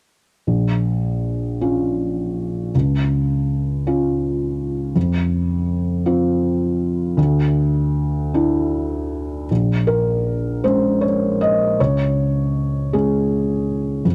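Neoclassical minimalist piano in 6/8, moving at a rubato 53 BPM with an intimate, reflective mood, cut from a longer piece. A felt-muted upright piano plays solo from 0.5 to 14.1 seconds, its thick felt giving a dark, mellow tone with audible action noise, set up front in a dry, close 1970s-style studio sound with small room ambience. The harmony moves from Bbm through Db, F5 and Dsus2, then shifts at 9.5 seconds into a second section built on Bbm7 and Db5.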